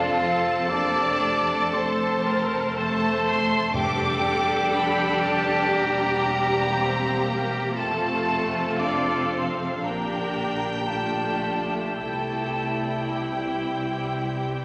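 Classical orchestral music, a slow romantic movement in 4/4 with a lyrical, rubato feel, cut from a longer piece. A dark, woody chamber violin section carries the melody with vibrato, joined in the same high register by a pure concert flute playing a second line with straight tone and tongued notes, while a lush symphonic violin section with a soft attack sings another second line in the background. A chamber viola section supplies expressive accompaniment, and a cello section with portamento and a dark double bass section, sitting in the background, anchor the bass. Mellow, distant French horns and a very quiet, clear trombone section hold sustained chords, while a close-miked trumpet section adds stabs from the background. Timpani struck with medium mallets sound close and dry between 3.7 and 5.2 seconds as the harmony moves through G7/F, and the passage closes on C, bathed in the roomy reverb of a concert hall.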